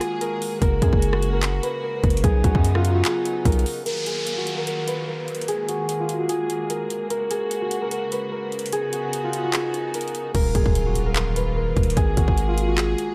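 Over a half-time trap beat at 148 BPM in Eb minor, an up-front electronic kit of hard-clipped kick, metallic hi-hats, handclaps, rim clicks and crash cymbal drives this brooding, dark hip hop excerpt, joined at 0.6 s by an aggressive, saturated 808-style bass with a noise layer, a fast attack and a decaying tail, while a bright, thumb-plucked concert harp carries a ringing, low-pass-filtered melody with digital delay above distant, bowed symphonic strings holding intense sustained chords with light vibrato; electronic downlifter and impact effects mark the turns, a filter sweep runs from 3.9 s, and the kick drops out at 9.5 s before the heavy bass returns, all in a dry mix.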